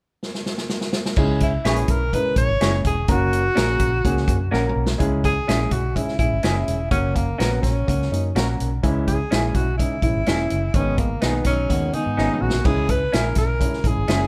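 A drum fill on a vintage kit opens this passionate, driving slice of uptempo 1960s-style soul at 0.2 s, with the kit sitting up front: dark cymbals, a medium-tuned snare and a tight kick. At 1.2 s bass and piano come in, as if the band were playing live in one room. A foam-muted fingered electric bass gives a round, punchy low end, while an upright piano adds mellow, woody accompaniment. From 1.4 s a breathy tenor saxophone carries the melody up front in a jazz-style solo, full of vibrato and scooped notes beneath a smooth top. At 1.6 s an electric guitar through a small old amp adds slightly broken-up, lo-fi stabs bathed in spring reverb, and a second guitar, brighter and twangy, plays a brief picked riff from 11.5 s. Moderate studio ambience wraps the whole band, and the passage is cut from a longer piece.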